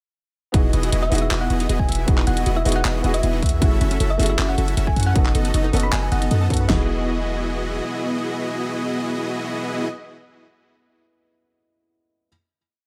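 Dry and close, this playful, lush future bass piece at 156 BPM in a half-time 4/4 feel in E major launches its drop at 0.5 seconds with a punchy pop drum kit of kick, fat snare, handclaps and metallic hi-hats, a deep, boomy 808-style bass, a huge, thick supersaw riff pulsing with sidechain pumping, a soft felt-muted upright piano with delay in the background, and an airy dreamy lead and a very quiet unison pluck tracing arpeggios. A round, tine-like thumb-piano-like synth pluck with vintage 12-bit grit joins at 1.0 seconds to carry the melody, before the drums fall away near 6.7 seconds and a final Emaj9 chord rings on to 9.8 seconds.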